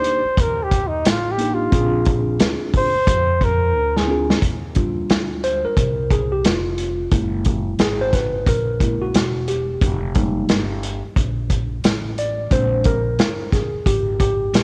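A 89 BPM jazz-hop groove with a 16th-note swing in Eb major rides on a vintage drum kit with a punchy kick, medium-tuned snare and hi-hat, its pumping small-room sound, cassette grit and rolled-off top sitting up front, beneath a woody, thumpy pizzicato upright bass on gut strings with tube saturation. A breathy, up-front flugelhorn leads with scooped notes and light vibrato until 4.3 seconds over a worn, slightly out-of-tune tine electric piano, mellow and direct, that accompanies from the start, a drum fill arriving at 3.7 seconds. From 4.4 seconds the electric piano takes a solo through extended chords until 14.6 seconds, the whole cut carrying a smooth, warm home-cassette feel with light reverb.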